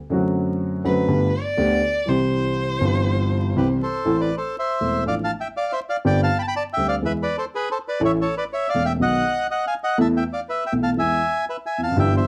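Melancholic and passionate, this tango excerpt moves at 122 BPM in 4/4 with a rubato feel, cut from a longer piece and shifting from C major to A minor at 4.1 seconds. A dark, mellow baby grand piano carries the accompaniment throughout, its smooth, vintage tone ranging from deep in the bass up to A4. The violin takes a brief solo turn as the second line from 0.9 seconds, a single bowed player heard with vibrato and portamento, expressive yet distant. From 3.6 seconds the reedy bandoneon takes over the melody, smooth and up front, climbing as high as B5 while the harmony passes through Am, Dm/A, Gsus4, E, A, B and Esus4 before settling on E. Moderate studio reverb and vinyl crackle give the whole production a dusky, aged character.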